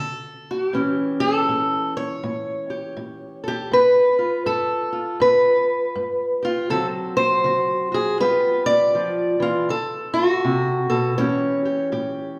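Laid-back and soulful, this short piece of acoustic country blues, cut from a longer performance, features a lone fingerpicked steel-string parlour guitar, dark and boxy in tone and placed up front. It swings gently in 4/4 through a bluesy turn of dominant seventh chords, settling on A7 by 11.2 seconds, with the playing reaching from low bass notes to a high D. A wet recital-hall reverb with a 1.5-second tail wraps the guitar in the spacious air of a church or concert hall.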